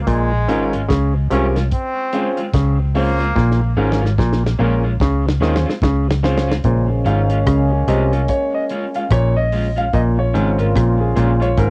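Meditative and hypnotic, this roots reggae excerpt in Bb minor sits at 73 BPM with a swung sixteenth feel, moving between Bbm7 and Dbmaj7 over a dark, foam-muted fingered bass placed up front, a stringy clav riff through a combo amp, and a dry, damped 70s drum kit with a tight kick and rim clicks that plays a fill from 3.4 seconds. A bright, distant solo trombone with tape echo carries the melody only briefly at the start, while a slightly broken-up electric guitar with tape echo and stabs from a grand piano fill out the accompaniment. At 6.6 seconds the piano takes a solo as a mellow, roomy trombone section enters with a tight second line, all set in light reverb with the character of a home cassette recording.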